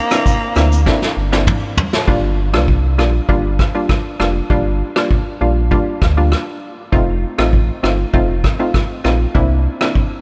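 A growling tenor saxophone opens this excerpt with a brief, breathy and raspy jazz-style phrase in a diffuse ambient delay, gone by 1.5 seconds. It sits over a hollow, bouncy square-wave pluck with chorus, which carries the accompaniment for the full ten seconds. A roomy, distant-sounding brush kit with a punchy kick, rim clicks, shaker, snare and toms plays a fill before 2.1 seconds, and the hi-hats are muted from there on. A deep, full sub bass with an added octave enters at 0.6 seconds and sits up front beneath the harmony, which moves from C9 to Gm7 and on to F7. The result is a sultry, smooth afrobeats groove in straight 4/4, set in a small room with light reverb.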